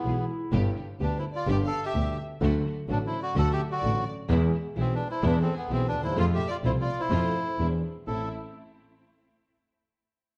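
A tango in A minor at 127 BPM in 4/4, played with a rubato feel, this short cut from a longer piece sounds tense and passionate. A reedy, vintage bandoneon carries the melody up front, while a violin section with a soft attack adds a woody, bowed second line. A mellow clarinet with subtone and scooped notes appears only briefly, at the opening and again from 8.1 seconds, just as the harmony settles on A minor after E7. Beneath them, a dark upright piano plays the accompaniment, and a bowed double bass carries the bass line with intense vibrato from a distant placement. A smooth, even string section adds stabs treated with tape echo, and the whole ensemble sits in a wet, large studio reverb with a dark, warm production.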